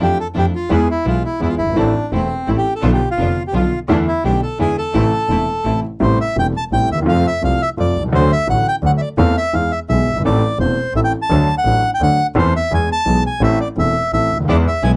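A reedy, dark bandoneon sits up front carrying the melancholic, dramatic melody of this rubato A minor tango in 3/4 at 170 BPM, over a warm, intimate grand piano with audible action noise and deep bass, a clear bowed double bass with light vibrato, and bright, intense string stabs that sound until 5.8 seconds and return at 14.5 seconds, all captured in a dry, close 1970s-style studio sound in a passage cut from a longer piece.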